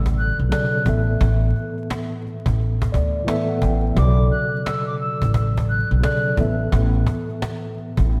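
A dreamy, reverb-soaked mix with vinyl crackle frames this reflective, dark boom-bap hip-hop excerpt at 87 BPM, swinging gently over Bm7 and Asus2. An up-front, mellow tine electric piano with a cassette-tape colour and a growly, woody pizzicato upright bass carry the groove, while a cajon with hard hands and faint snares and very quiet, dry finger snaps keep time. A distant, airy concert flute with a crisp attack and analog delay floats high above from 0.2 to 6.3 seconds.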